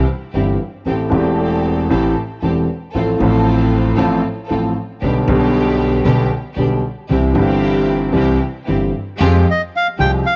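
Tango with a dramatic, passionate mood and a rubato feel, this short excerpt is built on an up-front concert grand piano with deep bass and long sustain, carrying the accompaniment over a woody, thumpy pizzicato upright bass, while a bowed string section adds soft-attack sul tasto stabs with light vibrato. The piano and strings carry the colour of cassette tape in a dry home recording, and the harmony moves from C through Am7, F/A and G/B and back to C before landing on Fmadd9. A reedy, dark bandoneon enters near the end at 9.5 seconds with a brief, smooth melody.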